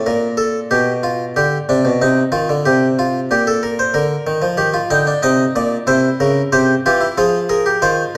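Set in a straight, steady 4/4, this brief passage cut from a longer baroque-style three-part fugue carries a solemn yet driving mood from the first beat to its end at 8.2 seconds. A single harpsichord plays alone, its plucked Italian-style tone bright and sitting up front, with one set of strings spanning from low in the bass to high in the treble. The hall's generous reverb gives the dark, warm production a sense of stately space as the harmony moves from an opening major-seventh chord through a chain of minor and dominant chords.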